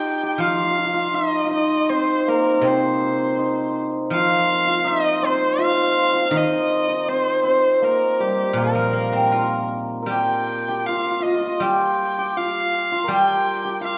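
A reverberant recital hall frames this wistful, graceful passage of Chinese traditional chamber music, cut from a longer piece and moving at a rubato 80 BPM in 4/4. Up front, a single bowed erhu carries the melody with an earthy, rich tone, light vibrato and portamento, while a shimmering hammered dulcimer rings out a second line alongside it. From 0.4 seconds, a silvery guzheng played with fingerpicks adds bright, ringing accompaniment.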